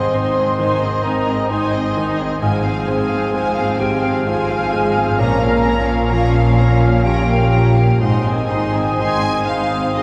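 A full orchestra opens together in this moving, uplifting cinematic excerpt in a rubato three-time: a hollow alto flute and a focused, vibrato-laden violin section carry the melody, while an airy flute section, a mellow cor anglais, a very quiet clarinet and a lush second violin section add supporting lines over a clear grand piano, faint violas, distant French horns and a ringing concert harp's arpeggios, with close double basses and smooth cellos beneath and the whole ensemble set in a wet church reverb.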